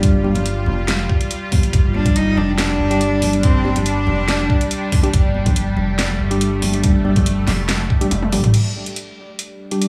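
Brooding and heavy, this half-time deep dubstep excerpt rests on a tense, detuned, string-like drone with phaser, a soft, round sub bass, and an up-front, tape-warm drum kit with a huge snare, metallic hats and a knocking electronic kick, while ringing congas sit in the background under dub echo. A worn, slightly out-of-tune tine electric piano adds stabs through a low-pass filter and dub echo, and from 1.9 s to 4.9 s an intimate, airy sul tasto cello carries a short melody. At 8.1 s the kick drops out for a drum fill, and a filter sweep on the drone carries the final moments.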